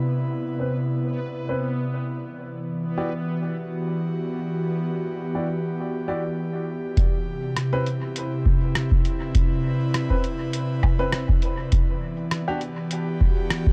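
Spacious and meditative, this dark ambient dub excerpt opens on an airy, breathy pad with chorus sustaining Cmaj7 and Em9 chords beside a reversed, granular swelling texture that stops at 7.0 s, while a woody, intimate upright piano with audible action noise drops low-passed stabs into dub echo, and at 7.0 s a deep analog electronic kick arrives up front alongside a muffled, pitched-down sampler-style kit of hi-hat, rim click and woodblock, itself treated with dub echo, within a production that carries little reverb.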